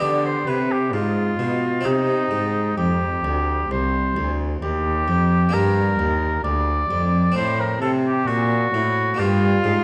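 A straight 4/4 pulse at 66 BPM carries this grave, introspective fragment of a baroque-style sonata movement in C minor, where a softly attacked oboe with light vibrato sings the melody up front over a close-miked, round Flemish-style harpsichord and a rich, smoothly bowed cello on the bass line, all set in a reverberant recital hall and colored by the warbly pitch drift of worn cassette tape.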